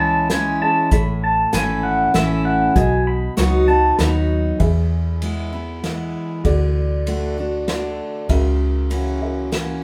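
A live-in-one-room sound with wet studio reverb carries this heartfelt, sunny honky-tonk and classic country waltz at 98 BPM in E major, where a twangy, fingerpicked pedal steel guitar with slide and volume swells takes the lead until 4.2 seconds over a bright, full-bodied dreadnought acoustic guitar with finger squeak, a round, foam-muted vintage electric bass, an unplugged drum kit with a punchy kick and dark cymbals played with bundle sticks, and a woody, slightly detuned upright piano in the background.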